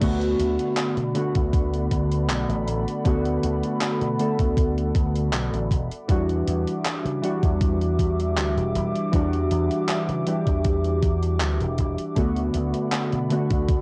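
A straight 4/4 pulse from a thumpy, overdriven electronic kick and a gated 80s drum machine with crash, handclaps and hi-hat drives this nostalgic, dreamy vaporwave fragment, where up-front warbling lo-fi synth keys with detuned, wave-folded square and sawtooth tones sit over a dark, evolving tape-like pad and a bright, punchy slap bass with an envelope filter, all moving from D6 to Em9 and back, with the whole piece captured on cassette in a small home room.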